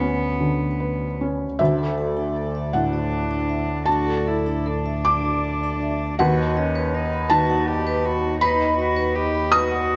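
A felt-muted upright piano opens this intimate, hopeful neoclassical fragment, soft and mellow up front, with a bowed cello singing a smooth, floating second line and a bowed double bass holding the low register beneath. The tempo is a slow 53 BPM in a 6/8 lilt, and the beats stretch and give with rubato, lending the music a breathing, unhurried pulse. At 1.6 s a reedy pedal harmonium enters in the background with sustained chords, and a vibraphone struck with medium hard mallets joins with bright, metallic arpeggios, its motor off, close-miked and ringing, touched with tape echo. The harmony moves from Bmadd9/D to Dsus2 and then to B/D# at 6.2 s, giving the passage a gently unresolved, searching glow. Both string players use a sul tasto, soft-attack sound with a pure tone, while the piano's thin felt keeps it hushed and close. A moderate recital hall reverb surrounds the ensemble, and the passage is cut from a longer piece.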